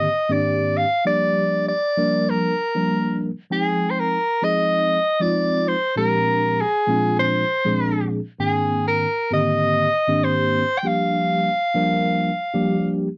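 A soprano saxophone and a tine electric piano begin together, opening a driving, nocturnal jazz passage cut from a longer piece. The saxophone carries the melody up front with a warm, vintage jazz tone, its solo line touched by a slapback echo. Beneath it, the mellow, clean electric piano supplies the accompaniment through its built-in speakers, colored by a phaser. The harmony moves from Abmaj9#11 through Gm7, Fm9 and Bb13 before circling back to Abmaj9#11 and Gm7, all over a gently swung sixteenth-note feel in four. The sound is dry and close, in the manner of a 1970s studio with only light reverb, and the saxophone stops at 13.0 seconds, just before the piano at 13.1.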